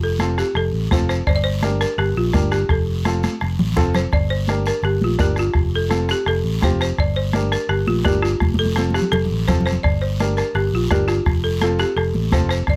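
A punchy, amped electric bass sits up front in this danceable, passionate cumbia, holding the low end in the F1 to Bb1 range from the very start. Over it, a folk marimba struck with hard mallets carries the melody between F4 and D5, its hardwood bars sounding dry, dark and rustic. A clear, slightly detuned upright piano fills in the accompaniment underneath, while the harmony rocks back and forth between F and G minor at a brisk 168 BPM in a straight 4/4. The percussion enters at 0.2 seconds: a bombo played with a soft beater, high-tuned congas with soft hands tucked in the background, and a raspy guiro mixed low. Drum fills break in at 3.2 and 8.4 seconds, and the close, detailed recording carries only light reverb in this short cut from a longer piece.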